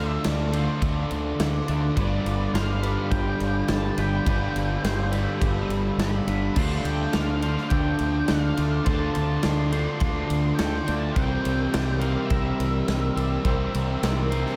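A straight 4/4 pulse at 104 BPM drives this melancholic, hazy shoegaze and dream pop fragment in D minor, cut from a longer rock piece, with a huge arena drum kit entering at 0.2 seconds to lay down a punchy kick, medium-tuned snare, and bright crash and ride cymbals in a big, natural room. Up front, a growling fingered electric bass with overdrive holds the low end, and it stops at 14.4 seconds. Behind it, a thick fuzz guitar thickened by lush chorus, an overdriven semi-hollow guitar with a hollow-body tone and reverse reverb, and a double-tracked overdriven electric guitar stack their picked riffs into a dense, layered wall in the background. On top, a dark octave-fuzz lead guitar carries the melody through distortion and delay, while a very quiet, twangy clean electric guitar picks arpeggios. A warbling, nostalgic tape-like pad with a detuned, wave-folded, lo-fi character sustains chords under chorus and its own reverb as the harmony moves from Dm7 to G7, back to Dm7, and on to C7. 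The whole take sits in light small-room ambience with a faint mains hum, running to 14.6 seconds.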